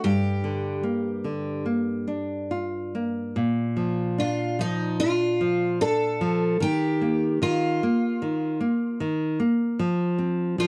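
A picked twelve-string acoustic guitar and a fingerpicked nylon-string guitar sound together from the opening moment of this mournful, passionate fado-style ballad, a short passage cut from a longer piece. The tempo sits around 74 BPM in 4/4, but the feel is rubato, with the time stretching freely. The twelve-string carries the melody between Eb4 and A4, its bright, octave-doubled tone shimmering with an auditorium-like character. Beneath it, the nylon-string guitar provides a full-bodied, classical accompaniment ranging from G2 to F4, a touch louder than the melody. The music opens on Gm7 in G minor, then shifts to Bb major at 3.4 s, moving through Ebadd9 before reaching F5 at 9.8 s. Both guitars sit up front in a dry, close recording with a 1970s studio character and little reverb, tuned to A4 = 442 Hz.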